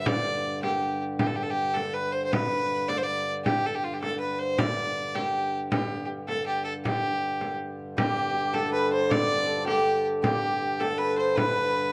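In a 6/8 at 106 dotted-quarter beats per minute with a straight feel, this medieval dance in G major has an ancient, festive air and is tuned slightly low at A4 = 438 Hz. A single bowed fiddle carries the melody up front, its clear, earthy tone touched with light vibrato. Beneath it a pedal harmonium holds a low drone, reedy and breathing, while a small frame drum played with hard hands adds bright, live-room percussion. At 8.0 seconds the opening passage repeats, and a hammered dulcimer enters with a shimmering, ringing second line that sounds alongside the fiddle until the fragment is cut off at 11.9 seconds. A moderate plate reverb with a 2.7-second tail sits over a dark, warm production.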